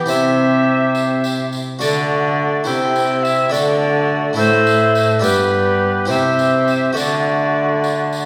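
A straight 6/8 at 69 dotted-quarter beats sets a festive yet stately Renaissance-style consort dance in D mixolydian, where a pure, chiffy tenor recorder carries the melody over a cor anglais second line, a bright, thin Flemish-style harpsichord and a punchy, mellow bassoon in accompaniment, a nasal gut-string cello on the bass, and a jingly tambourine entering at 0.1 seconds, all set back in a reverberant recital hall for this brief 8.3-second excerpt cut from a longer piece.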